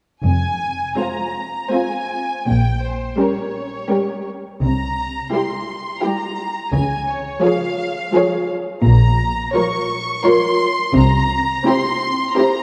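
A wet concert-hall reverb with a 2.5-second decay surrounds this dark, slow romantic movement for string orchestra, heard as a fragment cut from a longer work. In F minor and 3/4 at 85 BPM, the playing moves with rubato and carries an elegiac, yearning mood. The cello and double bass sections open at 0.2 s alongside the melody violins: the basses sound rich and even, the cellos focused with a silky top, both bowed with vibrato. The up-front violin melody has a concentrated yet slightly distant tone, while a second violin section and the violas enter at 1.0 s, the second violins smooth and close, the violas lush as they fill out the middle. The harmony travels from Fm through Gdim/Bb, C, Db and Bbm to a C7, and the low strings stop at 11.5 s as the upper parts carry on to the end.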